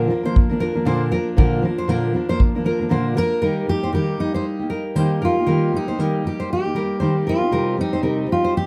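Acoustic pop in Eb major at 117 BPM, this heartfelt, carefree excerpt moves with a light swing on the sixteenths. A fingerpicked steel-string acoustic guitar sets up the accompaniment from the start, its jumbo body and fresh strings sitting up front with a full-bodied tone. A nylon-string guitar joins at 0.3 seconds with quieter arpeggios high in its range, lending a deep classical warmth alongside the steel strings. A punchy, polished kick drum played with bundle sticks sits up front and airy in a small room, but it drops out at 2.5 seconds. From 3.2 seconds a second fingerpicked steel-string guitar carries the melody, as the harmony shifts from Bb to Eb and later to C minor. A moderate studio reverb gives the mix a gentle sense of space.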